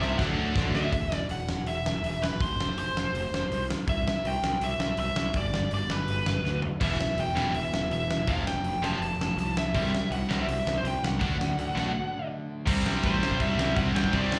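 A nasal, parked-wah lead guitar with overdrive and slapback echo carries the melody up front through this energetic, rebellious punk rock excerpt from a live club gig, backed by a growly fuzz bass, a big drum kit with a fat snare and a tight kick, and three bright distorted rhythm guitars that drop out after the opening fill at 0.9 seconds and return at 6.8 seconds, with a break at 11.9 seconds.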